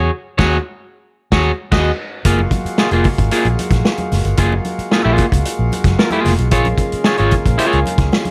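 An up-front, twangy electric guitar at the edge of break-up, bathed in plate reverb, provides the accompaniment in this hypnotic, sly funk excerpt at 112 BPM, joined by a round, foam-muted vintage bass and a gritty, saturated vintage drum kit with dark cymbals, while a reedy, breathing pedal harmonium enters at 2.2 seconds and thick-skinned congas sit in the background from 2.4 seconds as the chords move from Ebm11 to Gbmaj9 and Bbm7.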